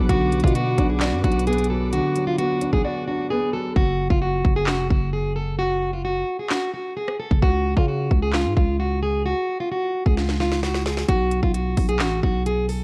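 Brooding and melancholic, this half-time trap excerpt is cut from a longer hip hop piece and wrapped in the worn, warbling sound of old cassette tape with a light, small-room ambience. A picked, boxy parlour steel-string guitar carries the melody up front throughout, softened by a low-pass filter and trailed by delay. At the start, a dark, mellow grand piano with audible action noise accompanies it over Bm, while a veiled, con sordino string section sustains bowed chords with vibrato in the background; both drop out by 3.8 seconds. A growling, buzzy 808-style bass with a fast attack and decaying tail sits prominently beneath, alongside a produced trap kit of hard-clipped kick, sharp snare, rim clicks, handclaps and crisp hats. After a break from 2.8 seconds, the second section moves to open, chordless ground with the hi-hats muted, then passes through a drum fill before the hats return at 11.1 seconds on a B5 power chord.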